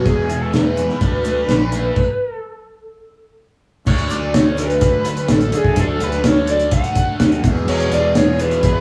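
A screaming, chorus-laden synth lead carries this hypnotic, kaleidoscopic psychedelic rock excerpt over a double-tracked fuzz guitar riff, lush bowed strings kept very quiet, a grainy tube shaker, punchy overdriven fingered bass and a muffled, cloth-damped drum kit with a fat snare, the band breaking into a stop from 2.0 to 3.9 seconds before pressing on in a stone room's small, wet ambience.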